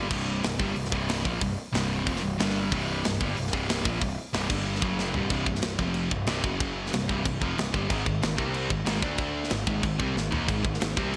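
A sludgy, double-tracked overdriven guitar riff drives this epic, aggressive heavy metal clip in C minor at 185 BPM, cycling through C5, G5, F#5 and Ab5 chords over a growly fuzz-picked bass and an up-front, tight acoustic drum kit with bright cymbals and gated reverb, whose fill at 5.0 seconds marks the shift into a second section, with another fill at 10.2 seconds, all set in a lush hall reverb with bright 1980s-style digital production.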